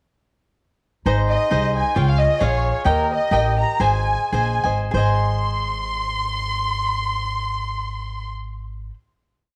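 Proud and romantic, this complete mariachi-style Mexican folk piece in Ab major moves in 2/4 between 90 and 133 BPM with a loose, rubato swing, slowing from 2.9 to 4.9 seconds before settling onto a final chord. A close, warm violin section carries the motif-based song phrases with expressive vibrato, while a crisp, bright cavaquinho strums open chord shapes and a woody pizzicato upright bass plays root and fifth on the main beats, all three up front. Echo-chamber reverb gives the short piece a moderate sense of space, and the cavaquinho rings on last until 9.0 seconds.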